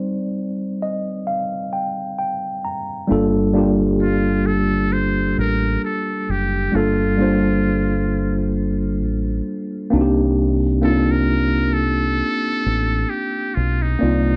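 Hip hop with a nostalgic, reflective mood, cut from a longer piece, opens on a worn, slightly out-of-tune tine electric piano with a filter sweep and fill, joined at 3.1 seconds by a round, punchy fingered dub bass and at 4.0 seconds by a buzzy, thin metal-muted trumpet solo with light vibrato, the whole recording carrying a warbling old-tape character and small room ambience.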